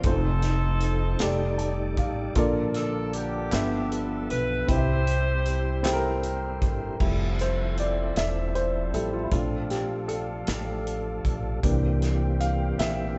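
Jubilant yet reverent, this slow gospel excerpt sways in 6/8 at 52 BPM in F major, with a mellow, distant saxophone section carrying the melody until 6.2 s over a worn, intimate grand piano, a reedy tonewheel organ with key click and chorus vibrato holding chords, a growly pizzicato upright bass and a punchy, up-front studio drum kit. Very quiet, crisp handclaps join from 3.5 s, and at 7.0 s the piano takes a solo while a tight woodwind section sustains warm chords in the background. The band plays together in a stone room with moderate reverb, its top end stopping short of 8.0 kHz.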